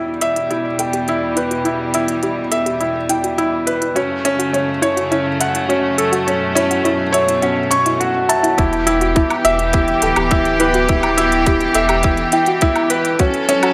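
A straight 4/4 pulse of crisp, overdriven electronic hi-hats and woodblock carries this intimate, moving piano-and-strings electronica. A felt-muted upright piano with audible action noise plays an up-front riff through tape echo, over sustained chords from a reedy, gut-string studio string section that is low-pass filtered and sidechain-pumped, while a dark, chorused pluck arpeggiates in the background under a filter sweep during the build-up. At the drop at 8.6 seconds, a tight, overdriven electronic kick arrives with a deep sine sub bass that plays until 12.2 seconds, all within a moderate echo-chamber reverb in this passage cut from a longer piece.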